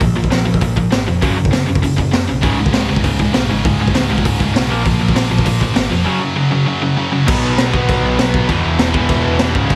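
Dry, heavily compressed and radio-like, this rowdy, upbeat punk rock cut moves at 198 BPM in a straight 4/4, led by a raw garage drum kit sitting up front with a high-tuned snare, punchy kick, dark cymbals and a gritty, saturated room tone. A growly, overdriven picked bass and two background guitars, one overdriven and compressed, the other tight, bright and distorted, pound out power-chord riffs on Bb5, Gb5 and Db5. At 2.4 s a heavy, double-tracked high-gain guitar joins, and from 7.3 s the progression shifts to Cb5 and E5 before the cut ends at 9.8 s.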